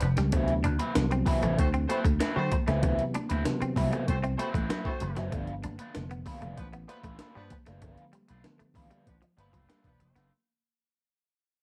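A punchy, amped slap bass sits up front in this energetic, strutting funk excerpt at 96 BPM, driven by a compressed, gritty breakbeat kit with a thumpy kick and high-tuned snare. At 0.3 seconds a crunchy overdriven guitar with wah and tube saturation, a mellow tine electric piano playing stabs through tape echo in the background, and very quiet, thin-skinned congas join the twangy clean guitar riff and the tight, clear horn section with octave doubling and light vibrato. The harmony moves from D13 to G9 in a dark production with moderate reverb, and the music fades out as it plays.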